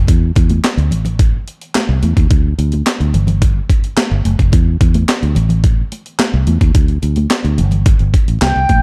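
An excerpt with a dark, warm production and digital ambience carries this slick, danceable early-eighties boogie funk groove, built on a gritty, compressed breakbeat-style kit with thumpy kick, snare, hi-hat and handclaps up front beside a punchy, foam-muted fingered bass. High-tuned, damped congas sit close yet in the background, and sparse Dsus2 and Gsus2 harmony leaves plenty of open space. At 8.4 seconds a smooth sawtooth synth lead with chorus and vibrato enters on a sustained high note just before the cut.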